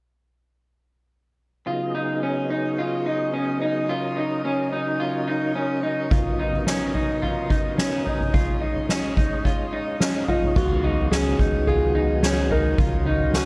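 A straight 4/4 pulse at 108 BPM carries this ethereal, floating dream pop excerpt, cut from a longer piece, over chords that sit on a Db pedal, moving from Abm7/Db through Ebm7/Db and Cbmaj7/Db to Dbsus2. From 1.7 s a clear tonewheel organ holds sustained chords through chorus vibrato and a slow rotary speaker, while a dark, slightly broken-up electric guitar, fingered and up front, plays arpeggios bathed in lush chorus and digital delay. At 6.1 s a soft-mallet drum kit arrives with dark cymbals, a fat snare, a boomy kick and toms, its natural hall sound sitting up front. A felt-muted upright piano, soft and intimate, adds a mellow melody with digital delay from 10.3 s, and a glossy, retro synth bass joins on a low Db, its pulse-wave and sawtooth tones evolving through pulse-width modulation, filter pluck and chorus. A moderate shimmer reverb with a long 4.2-second tail wraps the mix in a hazy, suspended space.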